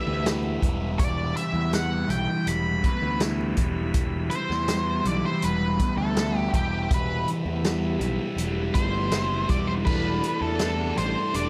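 A light reverb wraps this mysterious, hypnotic psychedelic rock excerpt in E minor at 81 BPM, where a dark, up-front octave-fuzz lead guitar solos from G4 to B5 with slapback echo over a double-tracked fuzz guitar riff through a phaser, an overdriven picked bass, a punchy small-room vintage drum kit with dark cymbals and a fill at 8.9 seconds, a smooth tonewheel organ with key click and slow rotary speaker in the background, and very quiet, distant, high-tuned congas, as the harmony moves from Em to Dsus4/E at 9.9 seconds.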